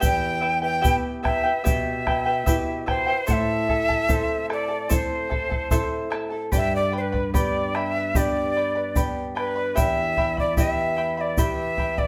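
A straight 4/4 pulse at 74 BPM, set by a deep, close and dry bombo and a grainy, compressed egg shaker that drops out at 11.6 s, drives this wistful, earthy Andean folk piece in E minor, where an up-front cane quena carries a breathy, tongued melody with vibrato over a shimmering, fingerpicked charango on double strings and a small, dark nylon-string guitar with fresh strings, the ensemble playing live together in one room washed in wet large studio reverb as the chords move from Em through Am and G back to Em.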